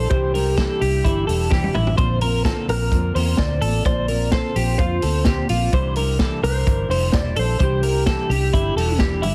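A small-room, heavily compressed radio sound frames this short cut from a longer piece of jangly indie pop, bright and nostalgic, moving at 128 BPM in a straight 4/4 around C mixolydian, with chords shifting from Cadd9 to Bbadd9 at 2.0 seconds and back to Cadd9 at 5.7. A twangy twelve-string electric guitar rings out clean arpeggios through delay, while a mellow, fingered electric guitar carries the melody with spring reverb, and a full-bodied fingerpicked dreadnought acoustic fills in the darker accompaniment underneath. A round, foam-muted vintage bass and an up-front vintage kit with a punchy kick and rolled-off top anchor the groove, the drums slipping in a fill between 1.5 and 2.0 seconds.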